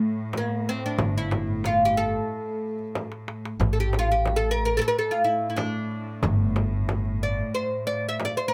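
Soulful and longing, this Arabic maqam ensemble passage, cut from a longer piece, centres on a bright, woody fretless oud plucked with a plectrum and placed up front. A reedy, nasal cello section with a gut-string tone holds a bowed drone underneath, and an upright bass adds pizzicato steel-string notes from 1.0 to 7.4 seconds. A clay-shell darbuka played with hard hands sits in the background beside a small frame drum, with a drum fill at 3.0 seconds, all captured close and dry with detailed microphones and little reverb.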